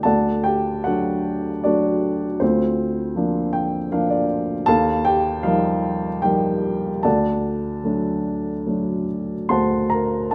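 A dark, woody upright piano carries this melancholic, reflective classical excerpt alone, its mellow tone and long sustain sitting up front across a range from D2 to C6. The lyrical playing moves in a rubato 3/4 at roughly 71-82 BPM, with a short fill from 3.2 to 4.7 seconds as the harmony shifts through D, Bb/D and Ebadd9 before settling back on D. A moderate recital hall reverb and a dark, warm production give the brief passage its mellow, enveloping character.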